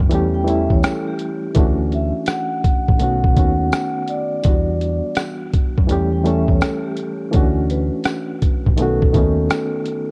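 Swung at 83 BPM in 4/4, this melancholic, nostalgic lo-fi hip hop excerpt rides a gritty, pitched-down boom bap kit with a thumpy kick, hi-hat and rim click under a reedy electric piano with fast tremolo and a dark, round picked bass, while a soft-mallet vibraphone melody enters at 1.9 s over brief delayed vibraphone phrases and a faint jingly tambourine, all through warbling, worn cassette tape and light reverb across chords such as A7/E, Dmaj9, B9 and Em9.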